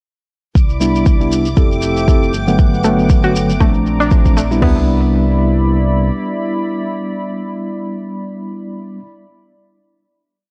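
Warm and sunny, this short deep house piece opens on a swung breakdown where an up-front drum kit with a deep four-on-the-floor kick, floor tom and crash carries gritty 12-bit sampler character, a close, grainy shekere plays hand-played sixteenths, a dark, detuned synth bass rides a syncopated riff, a shimmering string-machine violin section holds a high note, and a woody, bright mallet-like synth pluck cycles a six-step arpeggio that drifts against the bar from 2.8 seconds, laid over a smooth chorused analog pad and clean tremolo electric piano stabs in dotted rhythms that move one chord shape in parallel, with the pad, bass, strings, pluck and piano pumping to the sidechain, until the drums drop out at 4.8 seconds and the pad and piano hold the final chord to 9.0 seconds.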